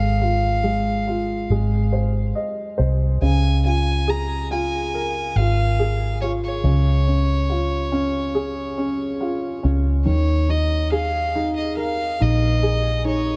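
A straight 4/4 pulse at 70 BPM carries this tender, heartfelt pop ballad in Db major, where a pure, floating sul tasto violin sings a soft-edged melody over up-front baby grand piano accompaniment, both bathed in tape echo, while a dark, round, foam-muted electric bass sits punchy beneath, all in a small room with light reverb as the harmony moves through Fm/Ab, Ab, Db6 and Db before resting on Ebsus4 at 10.1 seconds.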